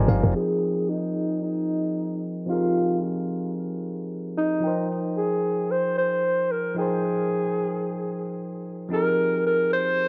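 Amapiano at 112 BPM in 4/4, this hypnotic, late-night excerpt is cut from a longer piece and rides a gentle 16th-note swing. A bell-like tine electric piano opens with a short fill in the first 0.3 seconds, then carries the accompaniment, its bright, clean tone sitting up front through a low-pass filter, cassette tape coloring and plate reverb. A breathy alto saxophone enters at 0.4 seconds as the solo melody, its whispered, intimate pop-style phrasing marked by vibrato, a soft attack and scooped notes. The sax also runs through low-pass filtering, tape and plate reverb, with analog delay trailing its lines. The harmony moves from Fm11 to Abmaj7/F and back to Fm11 under a filter sweep, and the whole has the hazy character of a home recording on cassette with a moderate studio room.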